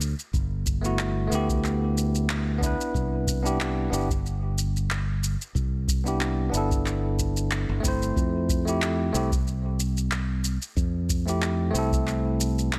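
Sunset chillout with a blissful, warm glow, this excerpt, cut from a longer piece, moves in a gently swung 4/4 groove. A layered electronic shaker and handclap pattern sets the pulse from the very start, and a deep, analog-flavored electronic kick drum joins at 0.3 seconds and drops out at 12.0 seconds. Up front, a growly fingered electric bass with tube saturation holds the low end throughout. At 0.8 seconds a barky, bell-like tine electric piano enters with clean, direct chords carried by digital delay, moving from Gmaj13 to Cmaj9 and then Fmaj9. A digital ambience surrounds the mix, and the tuning sits slightly below standard pitch.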